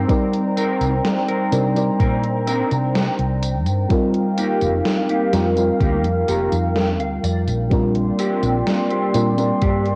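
Vaporwave at a slow 63 BPM in C minor, this hazy, woozy excerpt drifts through Cm7, F9sus4 and Bb69 chords held by a warbly, detuned tape-like pad with chorus and built-in reverb, over a soft FM electric piano with a vintage noise layer and tape echo. A dark, clean electric guitar plays a fingered riff through analog chorus, a low-pass filter and tape echo, with a filter sweep across the whole clip and a fill from 5.8 to 7.7 seconds. A round, up-front fretless bass anchors the low end beneath a thumpy, overdriven kick and an 80s drum machine whose hi-hat, gated-reverb snare and tambourine carry the lo-fi grit of a cassette home recording.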